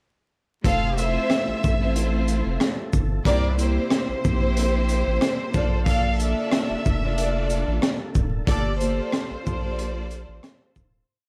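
Boom-bap hip-hop with a confident, warm feel, built on a crunchy, saturated breakbeat kit with a tight kick, a high-tuned snare layered with rim and quarter-note hats, alongside a deep, thick saturated sub bass line with muted ghost notes, all sitting under vinyl crackle and small room ambience. Lush bowed strings play chopped chords while a smooth violin section loops a short melody through digital delay, with jazz-style trumpet stabs, also delayed, in the background and a very quiet, lightly overdriven tonewheel organ pad with fast rotary swirl and key click, the strings, violins, trumpets and organ each repeating like a sampled loop over Fmaj7, C7, Bbmaj7 and Gm9. The trumpets drop out at 8.7 seconds as the whole hook fades out from 8.5 seconds to its close at 11.1 seconds.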